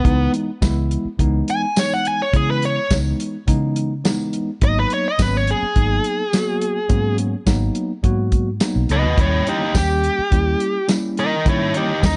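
A straight-eighth groove in 4/4 at 105 BPM drives this mournful, brooding soul blues in G# minor, cut from a longer piece. The acoustic drum kit sits up front, dry and dark, with hi-hat, a tight kick, a medium-tuned snare and tambourine, its top end rolled off. Beneath it, a vintage fingered electric bass, foam-muted and amped, gives a round, punchy low end from G#1 to D#3. A tine electric piano supplies clean accompaniment through a combo amp with medium tremolo, while a smooth, overdriven, picked lead guitar carries a warm, prominent melody between B3 and G#5. The harmony moves from C#m7 to G#m7 at 4.6 seconds and to D#7b9 at 9.2 seconds, all in a close, nearly reverb-free sound with a shaded upper range.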